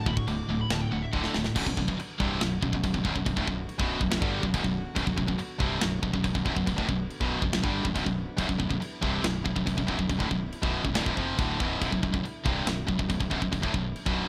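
An up-front, bright distorted guitar drives this heavy, epic metal excerpt in B minor at 140 BPM in straight 4/4, joined by a scooped, high-gain guitar riff in the background and a growly fuzz bass. A dark, high-gain lead guitar with digital delay plays a brief solo over a D chord until 1.2 s, and a drum fill from the tight, mid-forward kit at 1.1 s leads into the Bm section at 1.6 s. Underneath, a very quiet chamber string ensemble holds floating sul tasto chords, and the rough home demo mix sits in a small room ambience.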